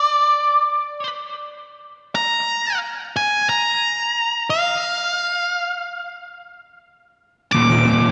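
Rock at 89 BPM in a straight 4/4, hopeful and euphoric in mood, this short clip is cut from a longer piece. An octave-fuzz lead guitar carries the melody from the start, its dark, distorted tone sitting up front and trailed by tape echo as it moves between D5 and D6. The opening stretch has the lead unaccompanied by chords, until an Eb5 chord arrives at 7.6 seconds. At 7.5 seconds an overdriven semi-hollow guitar enters with a low riff between Eb2 and Bb2, its hollow-body, double-tracked sound picked and placed prominently in the mix. A lush hall reverb with a 2.9-second decay soaks the whole mix, giving it a dreamy, spacious glow.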